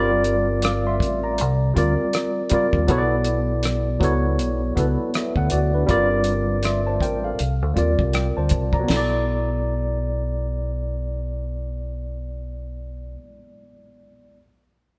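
A worn, slightly out-of-tune tine electric piano with light overdrive opens alongside a round, dark fingered electric bass, and the pair carry a soulful, introspective neo-soul groove at 80 BPM in B minor, swung on the sixteenths and moving through Gm11, C9sus4 and Bm11 chords. A damped 70s drum kit with a fat snare, tight kick, rim click, hi-hat and splash cymbal joins at 0.2 seconds and drops out at 9.1 seconds, as the harmony settles onto Bm7 in a brief new section. The band sounds like it is playing live in a moderate stone room, with the bass stopping at 13.2 seconds and the electric piano closing out this fragment of a longer piece.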